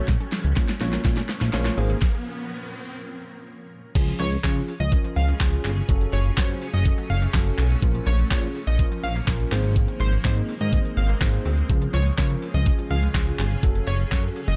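A straight 4/4 dance-pop groove at 124 BPM in Db major opens this summery, carefree excerpt with a drum fill, a knocking kick, fat snare and metallic hats sitting up front beside a dark, glossy chorused synth bass, while a background riser climbs from 0.2 seconds and the band stops out from 2.0 to 4.0 seconds before the drop. Underneath, a mellow tine electric piano with phaser, a cloudy granular pad, a lush, warbling unison pluck playing arpeggios through dub echo and a very quiet, hollow group handclap all breathe with sidechain pumping or sit low in the mix. At 4.0 seconds the drop lands on Db, and from 4.2 seconds a punchy, catchy plucky unison lead carries the melody with vibrato and dub echo over a cycling Bbm, Abadd9, Db and Gbm progression in a light, echo-heavy mix.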